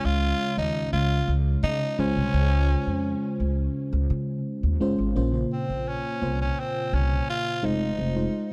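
A raspy tenor saxophone with a gritty edge and vibrato carries the melody from the start, over a mellow FM electric piano whose round, dark tone is touched with chorus and a woody, growly pizzicato upright bass, all in a glossy, nostalgic 1980s-style pop fragment at 85 BPM in Db major that moves from Db and Dbmaj7 to Bbmadd9 at 5.2 seconds and on to Fm7, heard in a dry, close studio sound.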